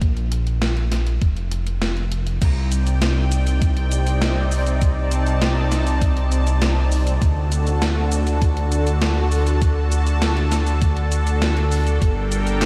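A deep, dark, detuned sawtooth bass rumbles up front with beating unison, tube saturation and sidechain pumping in this moody, cinematic synthwave excerpt at 100 BPM in straight 4/4, set in light digital ambience. A thumpy, tape-warm electronic kick in a small room reverb and a gated 80s drum machine with snare, handclaps, hi-hat, cabasa and crash cymbal under gated reverb drive the groove. At 2.4 seconds a lush, airy unison pad with chorus, phaser and a noise layer enters with a slow attack, carrying chords from Cmadd9 to D and then Gmadd9.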